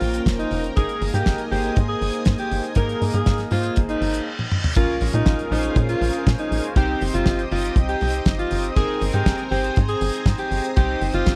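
Melodramatic and nostalgic, this italo disco cut at 120 BPM sets a clear, vibrato-laden alto saxophone melody with tape echo over a tight, nasal sequencer bass, glossy chorused polysynth stabs, a lush string machine ensemble sitting in the background, a damped 70s drum kit with dark cymbals and a fat snare, and a dry kick entering at 0.3 seconds, while a drum fill and a reverse cymbal lead into an electronic impact at 4.8 seconds, all captured in a close, dry 1970s-style studio sound.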